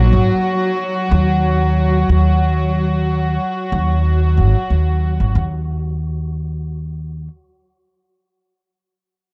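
A woody, dark pizzicato upright bass anchors this melancholic, cinematic trip hop fragment under a filter sweep until 5.3 seconds, over soft-attack, sul tasto symphonic strings holding distant, floating chords and a breathy, wind-like tuned noise layer in the background, both of which stop at 5.4 seconds while the bass plays alone until 7.3 seconds, all captured in a dry, gritty recording with transformer saturation.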